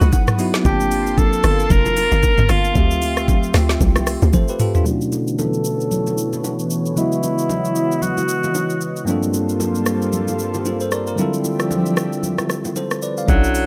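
A swung 16th-note groove at 114 BPM in 4/4 drives this soulful, late-night amapiano clip, built on an up-front electronic R&B kit of knocking kick, woody snare, rim click, shaker, toms and metallic hats, with ringing, saturated bongos and congas in the background. A hollow, bouncy log drum bass thumps through the opening drop until 4.3 seconds, when a drum fill leads into a filter sweep across the next section, while a bell-like, clean tine electric piano and a lush, detuned pad with chorus and sidechain pumping carry minor-eleventh chords such as C#m11 and Gm11. Above them a breathy alto saxophone with light vibrato and tape echo sings the melody, falls silent at 8.8 seconds, and returns briefly as the log drum bass comes back in the closing moments.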